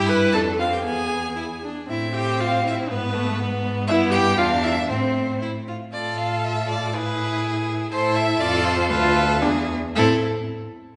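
In a rubato 2/4 pulse of 109-124 BPM, this quick classical-period string quartet movement in A minor feels restless and urgent, cut from a longer piece. A distant, focused first violin carries the melody with vibrato over a close second violin line, while a warm viola accompanies with expressive portamento and a clear, up-front cello holds the bass. All four play throughout in a wet recital-hall reverb, and the harmony moves through a series of chords before settling on A minor at 10.0 s.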